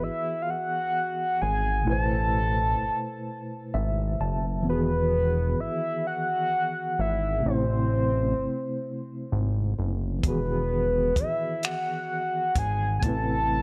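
Slow six-eight R&B in E major, moving at 43 beats per minute in dotted quarters with a tender mood, cut from a longer piece. A soft, octave-layered synth lead carries the melody up front, its round, mellow tone thickened by a sub octave and shaded with chorus, vibrato and tape echo. Beneath it, a worn, slightly out-of-tune tine electric piano plays the accompaniment through a combo amp with a medium tremolo, stepping forward with a short fill from 3.3 to 4.7 seconds. A fat analog bass sits low and up front, its nasal, saturated sawtooth character plucked by a filter and then sustained. The harmony drifts between Eadd9, Amadd9, Emaj9 and A minor, and a compact cocktail drum kit joins at 10.2 seconds with dry finger snaps, hi-hat and a punchy kick. Light reverb and studio ambience give the whole a close, intimate feel.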